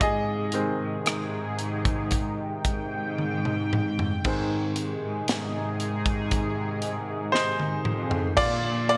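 A heartfelt, hopeful pop ballad excerpt at a slow 58 BPM in 4/4, where a brilliant, up-front grand piano carries solo passages over a chorused, detuned sawtooth pad and a veiled, muted cello section on the bass line, while a punchy modern studio drum kit with gated reverb adds fills at 3.2 and 7.3 seconds, all in a bright 1980s-style digital production with light small-room ambience as the harmony moves from Ab to Bb at 8.4 seconds.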